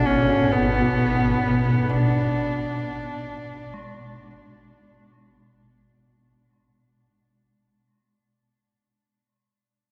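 Unsettling and cavernous, this short dark ambient drone piece is cut from a longer work, floats in free time, and fades out from its opening moment. Up front, a swarming, detuned drone with a granular, slowly evolving grain sits low and tense until it stops at 6.1 seconds, while a very quiet, breathy wind-like noise texture hovers high above it. A single horsehead fiddle carries the melody, bright and husky with light vibrato, portamento and an earthy bowed horsehair tone, its notes trailing into a diffuse ambient delay before it falls silent at 5.1 seconds. In the background, a gamelan-type bronze metallophone plays dark, smooth arpeggios whose paired tuning produces shimmering beats, also soaked in diffuse delay and ringing on alone until 9.3 seconds. The whole piece sits inside a huge, wet reverb with a 7.7-second tail, giving it the feel of a vast, echoing chamber.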